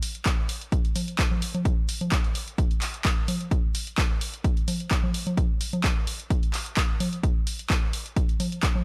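A swung house groove at 129 BPM in 4/4 drives this raw, short excerpt, its sixteenths pushed with a 54% swing. A punchy analog drum machine runs the full 8.8 seconds, its congas, handclaps and hi-hat overdriven and carrying the grit of being re-recorded in a large room. An electronic kick drum joins at 0.3 seconds, analog and tape-warm, sitting up front and slightly louder than the rest of the kit. Both drum parts sit close and forward in a dry mix with little reverb. The result is a driving, percussion-only passage cut from a longer piece.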